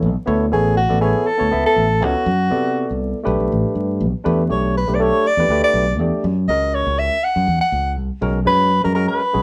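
Electric jazz fusion at 121 BPM in 4/4 with a light 16th-note swing, funky and bright, in which a barky, lightly overdriven tine electric piano heard through a combo amp plays accompaniment alongside a direct, amped fingered electric bass, and a warm soprano saxophone enters at 0.5 s to solo up front with light vibrato and subtone, all captured as a band playing live in one small room with moderate ambience, vinyl crackle and tuning at A4 = 441 Hz, in a short cut from a longer piece.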